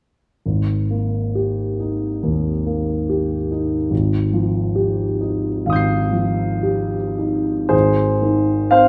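Impressionist classical solo piano, this short passage cut from a longer piece feels serene and dreamy, moving with a loose, rubato pulse in 4/4. A concert grand carries everything alone from 0.5 to 8.9 seconds, sitting up front with deep bass, an open tone and long sustain, ranging from Ab1 up to C7. The harmony drifts from a suspended Absus2 chord into a hazy Fm9 over an Ab bass at 3.9 seconds, then settles on a plain Ab chord as a brief new section begins at 7.7 seconds. A wet recital hall reverb surrounds the instrument, giving each sonority a lingering halo. The result is a calm, suspended moment that seems to float rather than drive forward.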